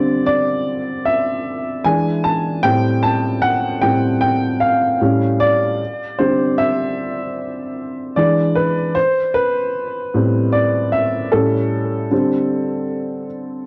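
Hazy and melancholic, this short hip hop excerpt drifts along at 76 BPM in 4/4 with a lazy swing on the sixteenths. A lone upright piano carries the whole 13.7 seconds, its dark, woody tone sitting up front and spanning from A2 to A5. The harmony circles through D9sus4, E7 and Am7, colored by passing Aaug7 and A7 chords before settling on D7sus4 at 12.1 seconds. A cassette tape character gives the piano a smooth, vintage feel, and the overall sound is worn, with a warbling pitch drift from old tape. A wet studio reverb with a 0.6-second decay adds a sense of space around the mellow keys.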